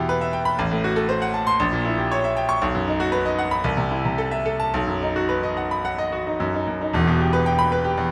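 A bright grand piano carries this short classical excerpt alone, a virtuoso study in E minor that sounds passionate and stormy. The tempo moves between 107 and 120 BPM in 4/4 with a rubato feel, and the playing spans from E1 up to C#6. Its tone is brilliant and natural, with short sustain, and it sits up front under close, detailed microphones with light reverb. The harmony moves from E minor through diminished chords and B major, touches A minor over C, returns to B, and resolves to E minor at 6.9 seconds as a brief new section begins. The fragment is cut from a longer piece and runs just over 8 seconds.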